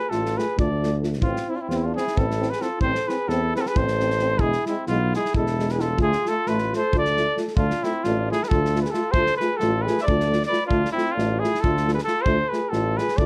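Restless and bittersweet, this Balkan brass band excerpt drives along in 7/8 at 266 BPM in D dorian sharp4, moving from Dm through Am and E back to Dm as a phrase repeats. A warm, up-front trumpet with vibrato carries the melody while a mellow, distant flugelhorn with a soft attack adds a second line, and a dark, smooth-topped euphonium and a vintage-toned euphonium sit in the background as accompaniment. A mellow tuba with light vibrato holds the bass, and an acoustic drum kit with a tight kick and medium-tuned snare keeps time in a small, moderately reverberant room.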